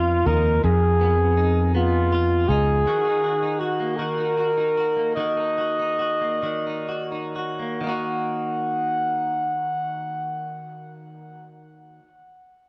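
Heard through worn, warbling old cassette tape with pitch drift, this short cut from a longer piece sits in a moderate recital hall reverb with a touch of studio ambience. It's an aching, melancholic pop ballad in a straight six-eight, moving from a Fm7b5 chord to Ebm at 2.9 seconds and slowing down until 7.8 seconds. Up front, a breathy, mellow flugelhorn carries the solo melody in a jazz style, close-miked with scooped notes and a tape echo trailing behind it. Beneath it, a double-tracked clean electric guitar, recorded direct, plays bright, picked, compressed accompaniment. A fretless electric bass with growly, punchy tone and subtle chorus anchors the opening before dropping out at 2.8 seconds, so flugelhorn and guitar carry the rest.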